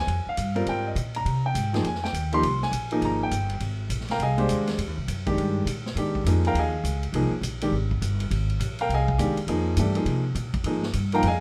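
Hypnotic and searching, this short modal jazz passage, cut from a longer piece, swings at 204 BPM in 4/4 over a single Fm11 chord in F dorian. A clear baby grand piano with short sustain sits up front, comping between Eb3 and C6 for the full 11.4 seconds. Beside it, a woody pizzicato upright bass on steel strings covers the low end from G1 to C3, close and present. A vintage drum kit enters at 0.1 seconds, set a little further back in a studio room, with dark cymbals on ride and hi-hat, a medium-tuned snare and a punchy kick under a rolled-off top. Light reverb gives the trio a natural sense of space, and the unchanging harmony keeps the groove circling in place.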